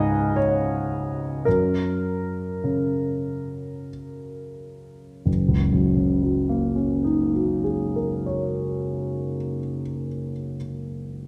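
A dark, reverberant recital hall, with a 1.3-second decay, surrounds a concert grand piano that sits up front with an intimate, natural warmth, its deep bass and audible action noise close at hand. This is a brief excerpt of impressionist classical solo piano in F# major, tuned to A4 = 437 Hz, with a luminous, dreamy mood. The music moves in a slow, rubato 3/4 between 42 and 64 BPM, spanning F#1 to B5. It opens on a C#5 harmony that settles onto F# at 1.5 s while the pace slows through the first 5.3 seconds. At 5.3 s a new passage begins on an F#69 chord, its added color hanging in the hall before the piano falls silent at 11.3 s.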